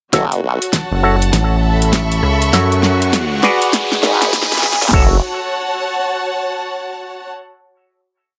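Glitch hop with a swaggering, playful swing, this short piece builds from the start to 4.9 seconds, with a drum fill and filter sweep throughout and a riser in the background from 2.2 seconds. Up front, a detuned, chorused wobble bass with changing wobble speed pairs with a rubbery, wave-folded square bass playing chopped phrases. Alongside them sit a punchy electronic kick in the background and a layered pop kit with fat snare, metallic hats, rim and crash on a swung, edited beat, while a stringy auto-wah clav drops sparse echoing stabs and a lush, bowed string section with vibrato carries slowly shifting chords into a final chord that rings until 7.3 seconds.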